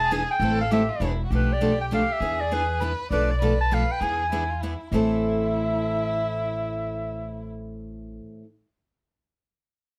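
A moderate studio ambience surrounds this short cut from a longer acoustic string swing piece in the jazz manouche style. It moves at a brisk 199 BPM in 3/4 with a swung eighth-note feel, in A minor, and passes from Am through E7 and Bm7b5 before returning to Am at 4.9 seconds, sounding swinging and virtuosic. A mellow, close-miked clarinet carries the melody up front, its subtone colour, vibrato and scooped notes set in plate reverb. Beneath it, a single dark bowed violin traces an expressive second line with vibrato and portamento, while a woody, thumpy upright bass on gut strings plucks the bass line up front. A bright picked steel-string acoustic guitar supplies the accompaniment with audible finger squeak, and it rings on until 8.5 seconds after the other parts have stopped.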